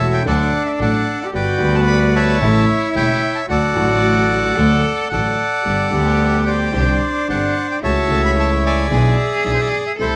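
A rubato 4/4 tango at 111 BPM in G major, this playful, nostalgic passage is cut from a longer piece and set in a light reverb. A reedy, up-front bandoneon carries the melody while a biting, earthy bowed cello traces a second line beneath it, and an intimate grand piano with audible action noise and deep bass supplies accompaniment through chords moving from D and G to Csus2, A/C# and E7/B. A clear, distant bowed double bass with vibrato anchors the low end, and a very quiet chamber string section adds rich, light-vibrato stabs.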